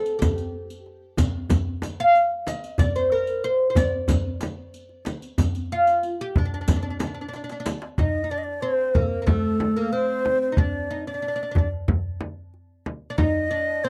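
A woody, fretless oud with double strings leads this longing, soulful Arabic maqam ensemble piece from start to finish. It plays a plectrum-plucked melody in D maqam bayati, at 92 BPM in a straight 4/4, tuned to A4 = 435 Hz. Beneath it, a deep, large frame drum sits up front, while a crisp, metal-shelled darbuka rests in the background and a riq adds dark jingles; all three are struck with hard hands. A drum fill leads into the second section: the riq drops out at 7.8 seconds, just before a breathy, end-blown reed-cane ney enters at 8.0 seconds. The ney carries a second line with vibrato and an expressive, crisp attack, close-miked and up front beside the oud. The sound is a dry, close 1970s-style studio recording with light reverb, cut from a longer piece.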